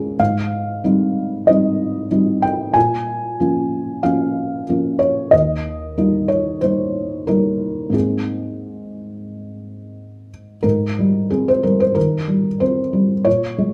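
A felt-muted upright piano, dark and close with thick felt, short sustain and audible action noise, plays alone through this intimate, peaceful neoclassical minimalist fragment in Ab major at a rubato 92 BPM in 4/4, moving through Abmaj7, Bbm7, Eb and Abadd9 before returning to Abmaj7 at 10.6 seconds, all heard in moderate studio reverb in a live room with lossy compression artefacts.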